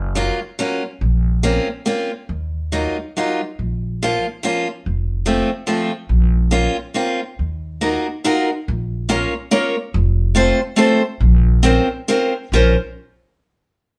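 A pizzicato upright bass opens this musette waltz, its gut strings giving a woody, thumpy low end, and a bright picked steel-string acoustic guitar joins at 0.2 seconds as accompaniment. The mood is whirling and nostalgic, with a swung triple-time lilt and a rubato feel. Both instruments sit up front, and the harmony circles through a minor progression of Gbmaj7, Bbmadd9, Ebmadd9, Bbm and F before returning to Bbmadd9. The two players sound like they are performing live together in one room, with moderate studio reverb and some lossy compression artefacts. This short excerpt is cut from a longer piece, with a new section beginning at 7.4 seconds and another just before the end at 12.5 seconds.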